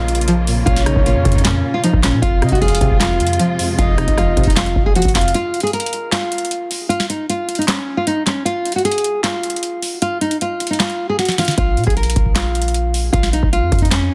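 Eerie and brooding, this half-time trap cut opens with a fingerpicked nylon-string guitar carrying the melody up front, its full-bodied classical tone softened by a low-pass filter and trailed by delay. Beneath it, a twangy, string-like resonator pluck with chorus and a filter sweep supplies accompaniment, while a dark, lush symphonic string section sustains bowed chords with vibrato in the background. A breathy, flute-like synth lead adds a mellow second line above, also set back in the mix with chorus and delay. A booming analog drum machine drives the track, with a deep kick, crisp snare, metallic hats, handclaps and rim clicks carrying a tape-warm character, and a hard-hitting 808-style bass hits punchy and heavy underneath. At 5.3 seconds the strings, pluck, synth lead and bass drop out for a break that leaves guitar and drums, until a drum fill brings the 808 back at 11.6 seconds. 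The master is dense and heavily limited with light reverb.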